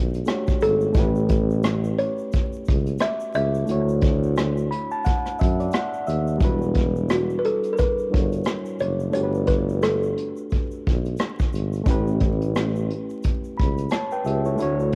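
Vinyl crackle and small room ambience on a home cassette recording frame this melancholic, reflective lo-fi hip hop excerpt at 88 BPM in 4/4 with a swung sixteenth-note feel, moving through Gmaj9, A7, Dmaj9 and Em9. A reedy, overdriven electric piano through a combo amp carries the chords under cassette tape coloring and a low-pass filter, adding a fill that leads into the second section at 6.4 seconds. Meanwhile, a mellow tuba with jazz-style vibrato holds the bass up front, a brushed kit with a punchy kick, hi-hat and rim click adds sampler grit, and a grainy shaker sits in the background. A buzzing, woody kalimba plucked with a thumbnail carries the melody from 0.6 to 11.5 seconds, its bright, short notes softened by tape and filtering.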